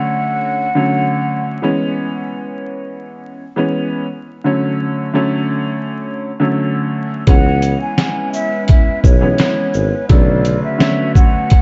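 A breathy, close-miked concert flute opens this moody, reflective boom-bap hip-hop fragment over a worn, woody, slightly detuned upright piano, which carries on alone from 1.6 seconds through a break. At 7.3 seconds the flute returns with a touch of delay, joined by a compressed, pitched-down drum kit with a thumpy kick, plus a punchy tuba bass with light vibrato. An airy, chorused pad soon adds soft sustained chords, all set in a small room under vinyl crackle.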